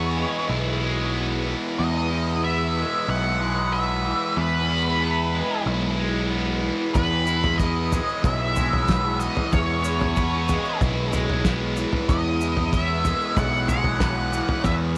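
A straight 4/4 pulse carries this hypnotic, trippy psychedelic rock passage, cut from a longer piece, built on a bright, double-tracked fuzz guitar riff with a phaser and a dark, round overdriven picked bass, both up front from the start. An octave-fuzz lead guitar sings its melody through wah, distortion and tape echo, while a lush vintage string machine holds sustained chords in the background with phaser and ensemble chorus. Around 7.0 seconds a cloth-damped, thuddy drum kit with a fat snare and tight kick enters alongside grainy maracas, all set in a small room ambience.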